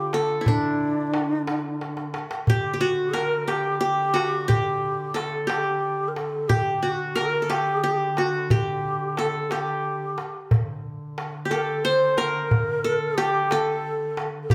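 An Arabic maqam ensemble piece in D maqam hijaz, this melancholic, hypnotic passage moves at 60 BPM in a straight 6/8, cut from a longer performance. The qanun carries the melody up front, its triple strings plucked with fingerpicks for a bright-edged, acoustic sound between D4 and C5. A breathy, reed-cane ney adds a second line in the same range, end-blown and tongued with expressive vibrato. Beneath them a mellow duduk holds a soft-attacked drone on D3, with scooped notes and a smooth top in a folk style. A metal-shell darbuka enters at 0.1 seconds, crisp and close under soft hands, and plays a fill from 1.8 to 2.5 seconds before the second section begins. The group plays live in one large studio room, and a moderate reverb gives the blend a natural sense of space.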